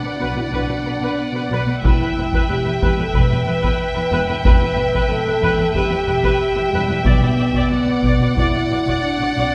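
A reverberant hall recording, cut from a longer epic orchestral film score in E minor at 92 BPM, carries a heroic mood as a rich, focused violin section sings the melody over a distant, lightly vibrato second violin line, smooth violas and mellow, tight French horns holding sustained chords. Dark, woody cellos and lush double basses in the background anchor the bass as the harmony moves from B minor to E minor at 1.8 seconds, where a heavy-sticked taiko ensemble enters and drives the straight 4/4 pulse. At 7.1 seconds the chord returns to B minor and a very quiet, close and dry timpani briefly sounds a low B.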